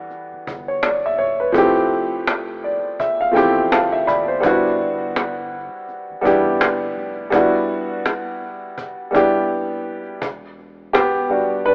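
Reflective and nostalgic, this lo-fi hip hop excerpt swings gently in 4/4, built around an up-front, woody upright piano accompaniment filtered through cassette tape and a low-pass filter, with a fill at 2.3 seconds and a short solo from 10.2 seconds after a brief break. A snappy cajon with snares and soft hands keeps time, while a deep, round dub sub bass sits in the background under chords moving from Em9 through Fmaj7. Light reverb and small room ambience give the rough home-demo mix an AM radio character.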